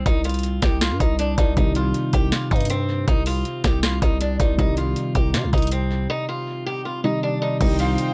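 A half-time trap groove at 159 BPM in 4/4 carries this melancholic, eerie C minor hip hop fragment, cut from a longer piece, where a knocking kick, sharp snare and bright hats sit up front beside a growling, buzzy 808-style bass, while a dark, woody, boxy picked old acoustic guitar plays the melody through a low-pass filter and tape echo, a soft felt-muted upright piano with audible action noise joins at 1.6 s under the same filtered echo, distant reedy gut-string chamber strings bow sustained chords from 7.6 s, and an airy pan flute with a crisp chiff and unsteady vibrato adds a second line at 7.8 s, all wrapped in a small, echo-heavy room.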